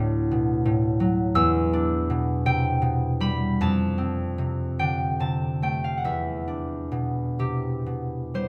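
A solo concert harp opens this brief classical fragment, its bright, ringing strings fingerpicked up front across a span from D2 to F#6 in a mysterious, wistful E minor. The playing moves with rubato in a slow 6/8 lilt, the harmony drifting from Dadd9 through Em7 and Fmaj7 before settling back on Em7 at 6.1 seconds. Close, detailed miking captures each string while a moderate stone-room reverb lends an airy halo, and the passage is cut from a longer piece, ending at 8.5 seconds.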